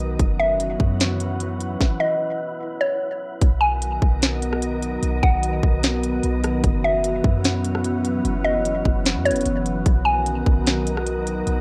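Lightly reverberant digital ambience and a rough home-demo mix frame this blissful, dreamy stretch of atmospheric cloud-rap in B major, moving at 149 BPM with a half-time feel in 4/4. A woody, warbling mallet-like synth pluck with chorus and digital delay carries the melody until 10.6 seconds. Beneath it sit a glassy FM pad with ensemble chorus and sidechain pumping, a boomy sine 808-style bass, a faint, breathy wind-like tuned noise texture, and an up-front trap kit of hard-clipped kick, sharp snare, rim click and crisp hats. The chords shift between F#7sus4 and Bmaj7, and a stop from 1.8 to 3.4 seconds briefly interrupts the groove.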